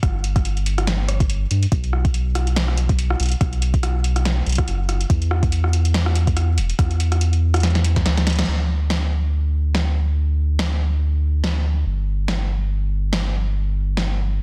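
A dense, heavily limited modern master with light reverb frames this playful, glitchy IDM fragment at 142 BPM in 4/4, with a 56% swing on the 16ths and tuning set to A4 = 442 Hz. A round, deep analog bass mixing sawtooth and sine tones sits up front with a fast attack and dark sustain, while an electro analog drum machine supplies metallic hi-hats, a rim click and a punchy snare re-recorded in a large room, all over a soft, overdriven electronic kick. The kick drops out at 8.0 seconds, midway through a drum fill that, together with a band accent at 8.4 seconds, carries the music into a new section at 8.5 seconds.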